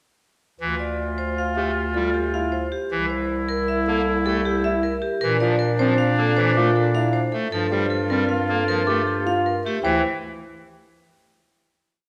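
In a wet recital hall, this meditative, hypnotic piece of minimalist pattern music in 6/4 is built from repeated short cells. A metallic, ringing vibraphone struck with hard mallets carries the melody, a grand piano adds arpeggios from 1.6 s, and a hollow clarinet stop on pipe organ, with chiff and tremulant, plays the accompaniment. Beneath them an up-front, smooth-topped bass clarinet sustains long bass notes while a close-miked oboe with light vibrato swells on held notes as a second line, a delicate, bell-like celesta joins in the background at 6.6 s, and the harmony moves through ninth and seventh chords before settling on a final suspended chord at 9.8 s.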